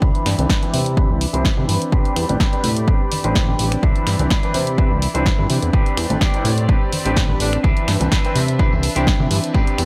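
Filtered disco house with a feel-good, funky mood, this short cut from a longer piece rides a lightly swung 4/4 groove over chords that alternate between Cmaj9 and Am11, with a filter sweep running through its full length. A punchy, tape-warm electronic kick sits up front, joined from 0.1 seconds by an analog drum machine playing finger snaps, hi-hat and a punchy snare, its hats pumping against the kick, while very quiet, bright tambourine and congas add a compressed, saturated shimmer. A fat, detuned sawtooth bass with a fast attack anchors the low end, and a warm grand piano comps through a phaser as a clean, picked electric guitar plays a riff soaked in spring reverb. A rich chamber string section holds bowed chords in the background, roughened by vintage 12-bit sampler grit, and bass, piano, guitar and strings all breathe with sidechain pumping under a low-pass filter. From 6.3 to 8.4 seconds a horn section with a smooth top and light vibrato slips in a brief, gritty, tape-echoed melody. 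The mix is dry, with little reverb overall.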